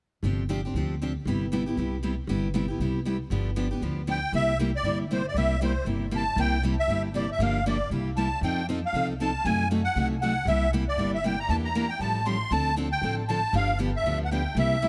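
Lively and playful, this acoustic string swing excerpt in the jazz manouche style moves at a brisk 235 BPM in 4/4 with a swung feel, settling into C mixolydian from 4.3 seconds. A bright, picked steel-string acoustic guitar with fresh strings and audible finger squeak sits up front alongside a woody, thumpy pizzicato upright bass, both playing from the opening at 0.2 seconds through changes such as G7, C7, F7 and F#dim7. At 4.1 seconds a reedy musette accordion takes the melody, its wet, shimmering tuning placed up front in a light reverb.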